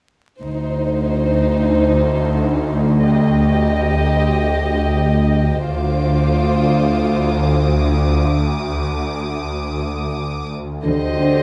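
Dark, intimate violins bowed sul tasto open this eerie, mysterious suspense film-score fragment in free time at 0.4 seconds, over warm cellos and double basses on a Cm/D chord, soon joined by a swarming, detuned granular drone in the background, with a faint, high violin texture drifting in at 5.6 seconds and a floating violin melody with a cello riff arriving at 10.9 seconds, all set in a moderate recital-hall reverb with a vinyl crackle.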